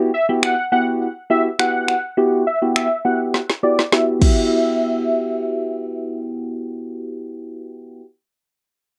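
A dry, close recording in a 1970s studio style frames this short, driving dance-pop cut from a longer piece, moving at 103 BPM in E minor over an Emadd9 chord. Soft, round electric-piano-like synth keys with a warbling vintage tone carry the accompaniment through chorus, phaser, sidechain pumping and a low-pass filter sweep, while a thick, bold, detuned sawtooth unison lead sings the sustained melody with vibrato and tape echo. A deep house drum kit with a deep kick, woody snare, finger snaps and crash cymbal drives the energetic feel, playing a fill from 3.3 seconds before dropping out at 4.4 seconds as the piece moves into a new section.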